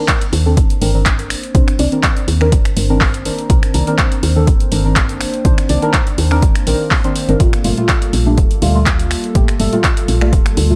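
A hollow, flute-like pad sits in the background under deep, mellow chord stabs, both softened by chorus and pumping to the sidechain, with phaser and tape echo on the stabs, as this smooth deep house excerpt at 123 BPM with a light 16th-note swing moves from Cm9 to Gm9 at 7.4 seconds over a punchy, tape-warmed electronic kick, an analog drum machine's finger snaps, handclaps and hi-hat, and a round, woody FM bass, all set in a digital ambience.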